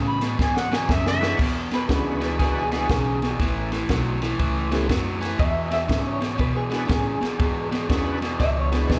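Electric blues shuffle at a laid-back, soulful 120 BPM in E, cut from a longer piece and heard as a live gig through a club PA with light reverb, moving from E7 to A7 and back. An overdriven, up-front electric guitar riff sits over woody, thumpy pizzicato upright bass and a compact cocktail kit with a punchy kick, high-tuned snare and dark cymbals, while a distant, mellow harmonica with scooped notes opens the excerpt over a drum fill. At 1.4 seconds a clean guitar solo takes over, a bright, shouting tonewheel organ with key click and slow rotary speaker enters just before, and a second, slightly broken-up electric guitar line with tremolo and slapback echo joins at 1.7 seconds.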